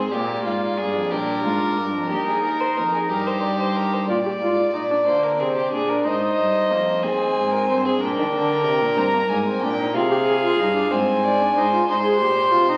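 In a stately, straight 12/8 lilt, this joyful baroque-style fugue for string quartet is cut from a longer piece, with all four bowed players sounding together from 0.0 to 12.8 seconds. Two rich, gut-string violins carry the melody and a second line, the second sitting up front. A dark, nasal viola with light vibrato supplies accompaniment over a period-style cello bass. The quartet sits in a wet recital-hall reverb and is heard through the crackle of a very old 78 rpm record.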